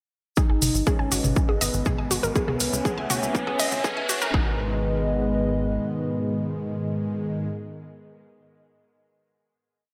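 Melodic techno with a hypnotic, driving mood, where an overdriven, punchy four-on-the-floor kick, a house kit's open hats and mid toms, grainy hand-played cabasa sixteenths, a tight rolling sequencer bass and lush detuned unison-pluck arpeggios charge through a build with a filter sweep and a background riser that peaks at 4.3 seconds, the plucks and bass lingering a little past it, while a round octave-layered synth lead riff, brassy echoing chord stabs and a deep, moody pad with sidechain pumping carry on into a final sustained chord, all bathed in a dreamy, reverb-soaked mix.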